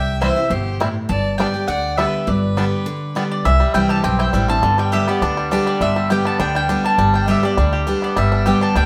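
A straight 4/4 at 204 BPM drives this lively, rustic bluegrass fragment in G major, with a thumpy pizzicato upright bass and a bright, full-bodied dreadnought guitar up front as picked accompaniment, while a twangy, percussive fingerpicked banjo plays arpeggios from 0.2 s. A woody, double-strung mandolin carries the melody over C and G chords, joined at first by an intense bowed fiddle with light vibrato on a second line until it stops at 3.3 s, around a short break before the second section begins at 3.5 s. The band plays live together in a stone room with moderate reverb.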